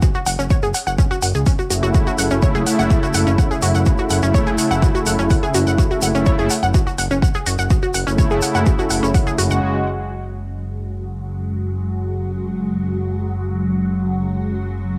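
A fat, detuned analog bass drives this melancholic melodic techno cut in F# minor at 125 BPM, pumping under a punchy, tape-warm kick, smooth hi-hats, a grainy tube shaker, bright unison pluck arpeggios and brassy pad stabs until about 9.6 seconds, when the harmony shifts to F#sus2. From about 10.3 seconds, an evolving, ring-modulated wavetable pad with phaser and ensemble chorus takes over beside the bass, all in a lightly reverberant home cassette recording.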